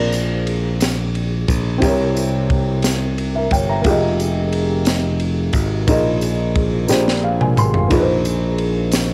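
Slow gospel in a straight 6/8 at 59 BPM, soulful and uplifting, heard in a short excerpt cut from a longer piece with a home-cassette, small-room feel. A dark, woody upright piano with audible action noise and a slightly detuned, vintage tape character carries chords from Bb9 through C7b9 and Fm11 to Bb7sus4, while a growly, punchy picked electric bass with transformer saturation sits up front, a crisp fusion kit with a high-tuned snare and tight kick enters at 0.1 seconds, and a jingly, close tambourine rides quietly beneath. At 6.9 seconds the drums and piano both play fills over a Bb13 before settling on Bb9sus4.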